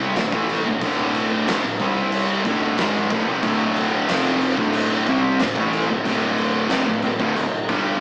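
A rough rehearsal-room recording with warm saturation, small-speaker grit and a moderate small-room reverb carries this hypnotic, ominous stoner and doom metal passage at 92 BPM in D minor, cut from a longer piece. Up front, an oversized, low-tuned acoustic kit pounds with a boomy kick, fat snare and dark cymbals in a bright, pumping stone room, while a bright, double-tracked high-gain guitar, a dark fuzz guitar and an overdriven, direct-and-amped fuzz bass grind through the riff from the start. A second, warmer fuzz guitar joins the riff at 3.4 seconds over the Dm chord.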